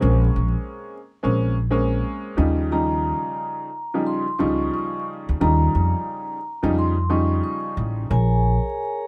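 Moody and reflective, this short hip hop excerpt at 89 BPM rides a swung 16th-note feel as a worn, slightly detuned upright piano with a cassette-tape tint and a dark, woody pizzicato upright bass sit up front over Bbm9 and Eb9 chords, joined at 2.7 seconds by a mellow, ringing soft-mallet vibraphone melody with slow motor vibrato and tape echo, before a flute-like tonewheel organ with key click brings sustained Bbm7 chords at 8.1 seconds, all within a rough home-demo mix touched by vinyl crackle and light reverb.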